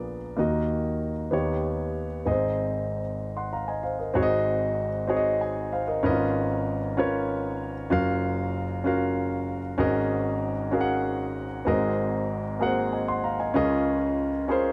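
Hopeful and reverent, this short gospel excerpt unfolds at a slow 64 BPM in a gently rocking 6/8 with a straight feel. A grand piano plays alone throughout, sitting up front with a warm tone and covering a broad span from Gb1 up to C6. The harmony moves from Ebm through an augmented seventh to Ab, then settles into a longer passage from 4.2 seconds built on rich extended chords such as Db13/Ab, Gbmaj7 and Ab9sus4. It comes to rest on a Db69 chord at 13.5 seconds, giving the phrase a sense of arrival. Light reverb and a dark, warm production lend the performance an intimate, devotional glow.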